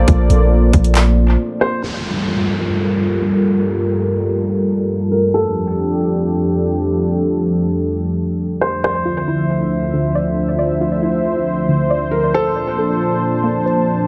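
A melancholic, ethereal cloud-rap fragment at 137 BPM in a half-time feel opens on a moody, detuned sawtooth pad with chorus and sidechain pumping alongside a deep sine 808 bass and a brief trap kit of hard-clipped kick, metallic hats and handclaps through analog delay, then after a short break the pad carries on under a filter sweep as a boxy, felt-muted upright piano enters at 1.6 seconds with soft delayed melody notes and audible action noise, an electronic downlifter passes, and a round, wave-folded pluck joins in the background with chorused, delayed arpeggios at 8.8 seconds, all in an echo-heavy mix with a faint mains hum.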